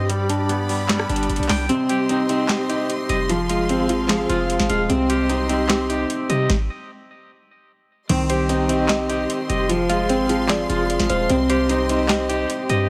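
A filter sweep opens this brooding, hard-hitting half-time hip hop and trap excerpt at 150 BPM in C harmonic minor, where a twangy, up-front electric guitar plays clean arpeggios colored by tremolo and delay over lush bowed strings and a punchy sine 808 bass, while a booming analog drum machine brings a deep kick, crisp snare, metallic hats, claps, rim clicks and crash; a dark, boxy grand piano joins at 1.7 s just as the kick briefly drops out, a stop arrives at 6.5 s, and a woody FM synth pluck adds a mellow background line from 8.3 s, all set in a light reverb.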